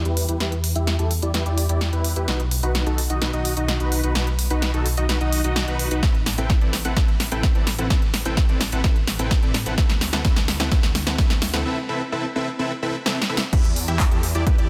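A straight 4/4 pulse at 128 BPM drives this emotional, anthemic festival progressive house build in E minor, where a huge, airy supersaw riff pumps under a sidechain with a filter sweep and digital delay, a lush chorused saw bass pumps beneath it, and a big-room drum kit of crisp hats, handclaps, snare and crash cymbal rolls through fills before a punchy electronic kick enters at 6.0 seconds, all building to a break at 11.7 seconds and a drop at 13.5 seconds in a dense, heavily limited mix.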